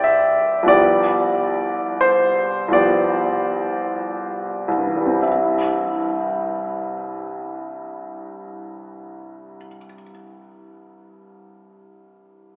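Heard through a narrow, telephone-like filter and soaked in a cathedral reverb that lingers about 5.4 seconds, this short passage from a longer romantic nocturne places a clear, intimate baby grand piano up front, with its natural tone and audible action noise. Played alone in C major in a slow, rubato 12/8 at roughly 22-33 BPM, the piano spans C2 to G5, moving from C to G7/C and slowing down over the first 5.2 seconds. It then settles back on C as a new section begins, keeping a tender, serene mood through 12.6 seconds.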